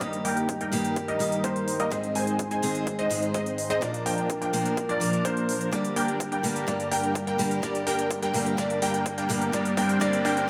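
Festival progressive house at 126 BPM, uplifting and triumphant, builds throughout this excerpt, with a punchy, detuned supersaw stab riff out front carrying phaser, cassette-tape colour, sidechain pumping and a filter sweep, a boxy picked ladder-braced acoustic guitar also up front with pumping and delay, a grand piano playing high arpeggios under its own filter sweep, a lush, warbling, very quiet pad holding sustained chords, crisp overdriven electronic hi-hats, a layered, overdriven kick set in the background, a drum fill from 5.7 s, and a faint riser entering at 8.0 s, all moving from Eb/G through Ab, Bb and Gm to Gmadd11 in a lush hall reverb.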